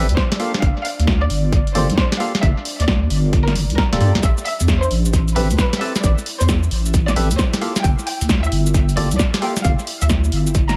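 A detuned wobble bass sits dark and up front beneath an ethereal pad, which pumps in the background with phaser and ensemble chorus, while hollow, ring-modulated organ stabs with dub echo punctuate this bouncy, late-night two-step garage excerpt over Gm9 and Am9 chords. A tight, layered electronic kick and a punchy analog drum machine of hi-hat, shaker and snare with tape echo drive the swung groove, and a lush, distant violin section carries the melody with vibrato and dub echo. The organ stabs stop at 9.5 seconds, and the whole mix is echo-heavy and dusted with vinyl crackle.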